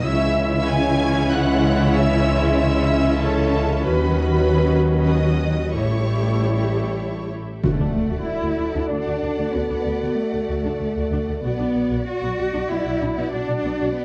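In a stately 3/4 at 95 BPM, this majestic, triumphant cinematic cue, cut from a longer piece, opens on shifting harmony from C#m through Badd9/D# to A7, with distant violins singing a clear, intense melody over a second violin line, backed by rich violas, mellow French horns, a roomy trombone section and biting strings in the background until about 7.6 s. Expressive cellos with portamento and up-front double basses anchor the bass from the opening onward. At 7.6 s the music settles into D major as a huge, dark impact lands with a very quiet, round timpani stroke, and the cellos and basses carry on through to Bm. A moderate scoring-stage reverb and a worn, warbling cassette-tape pitch drift give the whole passage an aged, dreamlike sheen.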